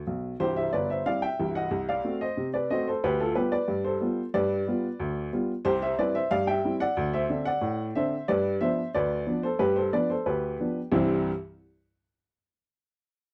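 Ragtime piano in a jaunty, cheerful C major at 91 BPM in a straight 2/4, this brief cut from a longer piece features a solo upright piano with a woody, boxy tone and short sustain, played up front from 0.1 to 11.3 seconds across a range from C1 to G5, moving through C, Cdim7 and G7 changes with light reverb in a dry, close 1970s-style studio sound.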